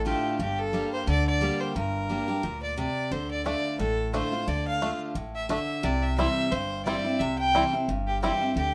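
Swinging eighths drive this rustic bluegrass excerpt at 176 BPM in 4/4, where a clear, biting fiddle with light vibrato carries the melody up front over a bright, full-bodied picked steel-string guitar and a woody, thumpy upright bass, while a twangy, percussive fingerpicked banjo joins the melody at 3.5 seconds as the chords move from Gm through Dm to C in moderate studio reverb.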